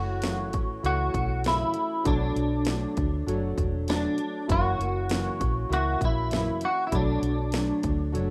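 Mellow and hazy, this short cut of bedroom-flavoured indie pop drifts over a rough, home-demo mix in a digital ambience, with chords moving from F#m7 through Bm7 and F#7 and back to Bm7. A twangy, compressed clean electric guitar carries the up-front melody, touched with analog chorus and slapback echo, while a fingerpicked nylon-string guitar with audible finger squeak and warbling, detuned lo-fi synth keys fill in the accompaniment. A round, foam-muted fingered electric bass sits up front, and a punchy, tape-coloured house drum kit of kick, cracking snare and hi-hat enters at 0.2 seconds.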